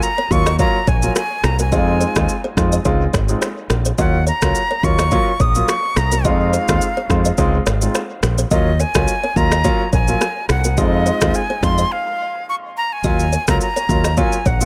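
Afrobeats with a smooth, sultry mood, where a breathy, bright jazz flute with vibrato carries the melody up front over warm grand piano chords and a woody, hollow kalimba riff in the background, both steeped in dub echo like the flute, while a punchy fingered electric bass with an envelope filter and a tape-warm electronic drum kit of deep kick, finger snaps, rim click and shaker drive a gently swung groove through a brief break at 11.9 seconds in this small-room, echo-heavy fragment of a longer piece.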